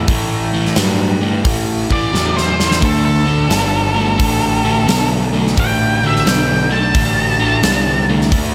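Blues rock in the power-trio mould with a southern rock streak, this short excerpt cut from a longer piece moves at 87 BPM in 4/4 with a swung eighth-note feel, and its mood is smoky and gritty. A crunchy, bright, double-tracked overdriven guitar carries the riff up front with slapback echo, joined by a fuzz-soaked picked electric bass that sounds direct and amped. A huge acoustic arena drum kit with a punchy kick, medium-tuned snare and hi-hat sits forward in a pumping room sound, and it plays a fill from 2.1 to 2.8 seconds. An octave-fuzz lead guitar, dark and distorted with its own slapback echo, enters at 1.9 seconds to carry the melody high above the band. The harmony moves from A7 to D5 at 2.8 seconds, and a moderate scoring-stage reverb gives the whole performance a big arena sound.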